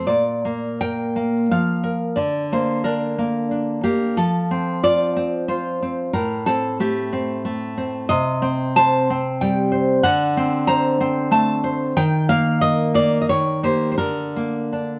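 Passionate and intimate, this romantic piece for solo classical guitar moves in a rubato 3/4 at roughly 80-96 BPM in Bb major, cut from a longer work. The fingerpicked nylon-string guitar sits up front with a full-bodied, deep classical tone, spanning A2 to Bb5, with finger squeak audible and light reverb giving the sense of a live room. Its harmony travels from Bb through F, Am7, Cm and D7 to an Eb7 before settling on Bb/D at 14.0 seconds.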